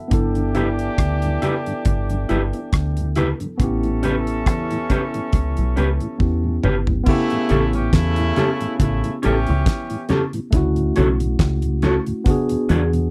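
A slow, swung sixteenth-note lilt at 69 BPM in 4/4 carries this tender, sweet lovers rock reggae excerpt, anchored by a damped 70s drum kit with a fat snare, tight kick and dark cymbals, touched with tape echo, while thick-skinned congas sit in the background with their own tape echo. A deep dub fingered electric bass, round, punchy and foam-muted, sits up front beside the drums, and an electric guitar through a small old amp adds slightly broken-up, lo-fi picked stabs. A worn, slightly out-of-tune tine electric piano plays accompaniment through its built-in speakers, joined by a mellow tonewheel organ in the background with chorus vibrato and a slow rotary speaker. A distant, roomy horn section with light vibrato carries a second line until 10.1 s. A drum fill at 6.2 s leads into the second section at 7.1 s, and the harmony moves through G6, A9, A7, Dmaj7 and E7, all captured in a close, dry 1970s-style studio sound with light reverb.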